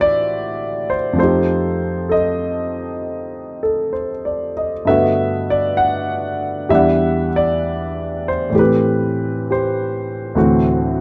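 Romantic and intimate, this slow 66 BPM swung jazz ballad excerpt features a solo concert grand piano with a warm, natural tone, deep bass, audible action noise and an up-front placement, moving through lush chords such as Am7, F9, Gmaj9 and Em9 in a dry, close 1970s-style studio sound touched by light reverb.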